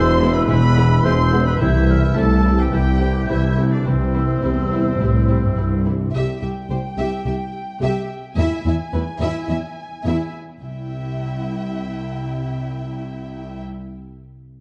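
A straight 4/4 pulse at 107 BPM carries this triumphant, heroic film-score excerpt in C major, where a rich chamber violin section sings the melody with focused vibrato over a second violin section's supporting line, a dark viola section in the background and a lush, up-front cello section. Through the opening, a clear oboe, an airy, hollow flute ensemble and a warm clarinet add second lines while very quiet mellow French horns and trumpet stabs, vintage-toned trombones, a roomy tuba and a smooth double bass section fill out the brass and low end, all falling away by about 6.1 seconds. A bright, ringing concert harp plays arpeggios until 9.5 seconds, leaving violins, violas and cellos to continue under a moderate scoring stage reverb.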